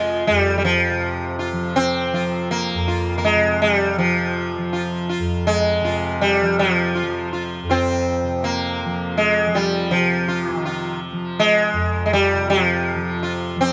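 A sitar and a tanpura sound together from the very start of this short fragment of Hindustani classical music in raga Bhimpalasi, centred on F. The tanpura holds a softly plucked, warm drone between F2 and F3, its buzz adding a faint halo beneath the melody. Above it, the plectrum-plucked sitar carries the melodic line between F3 and F4, its bright tone ringing with shimmering sympathetic strings, and it sits a little louder than the drone, though both are close and up front. The mood is meditative and solemn, moving at an unhurried 81 BPM in a straight 4/4, with a new passage arriving at 9.9 seconds before the clip cuts off at 13.7 seconds. Light reverb and the ambience of a small room frame the pair in a rough, home-demo mix.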